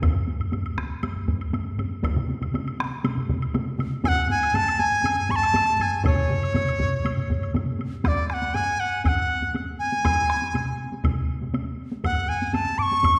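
Driving and powerful, this Japanese traditional taiko drum ensemble piece moves at 120 BPM in a straight 4/4, set in C# miyako bushi and cut from a longer work. Two taiko ensembles, one struck with heavy sticks and the other with hard sticks in a small room, sound from the start alongside a close, dry, woody woodblock and a closely placed solo taiko drum, with a second solo taiko joining at 2.2 s and stopping at 11.5 s. At 4.0 s a bright, reedy bamboo dizi with a buzzing membrane, crisp attack and pure straight tone enters up front, ranging from C#5 to D6 over a wet scoring-stage reverb as the music moves into a new section at 8.1 s.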